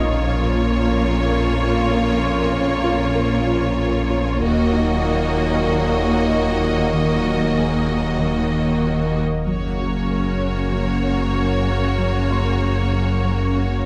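Cinematic hybrid orchestral and electronic film score, relentless and brooding, in which clear, intense violin sections carry the melody and a second line over rich viola accompaniment, lush detuned sawtooth pad chords with chorus, mellow French horn and trombone sections, a squelchy resonant blip pluck playing very quiet arpeggios, dark woody cellos, smooth double basses and a deep sine sub bass, with a felt-muted upright piano adding an intimate texture, a huge, bright impact barely audible in the opening 1.9 seconds, and the whole ensemble set in a wet recital hall reverb.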